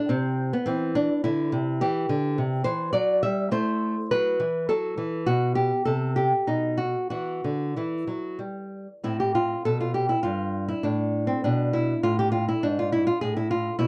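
A solo nylon-string guitar carries this grave, flowing baroque-style dance. Its fingerpicked tone is dark and small, set up front and reaching from G2 to E5. The dance moves in 3/4 at a rubato pace of roughly 92 to 106 BPM, beginning in E minor over Cadd9, C and F#m7b5 harmonies before settling on Em. At 9.1 s the opening material returns, now centred on A minor and passing through Asus4 to a G#5 chord. The sound is a dry, close 1970s-style studio recording with moderate booth ambience, and this short fragment is cut from a longer piece.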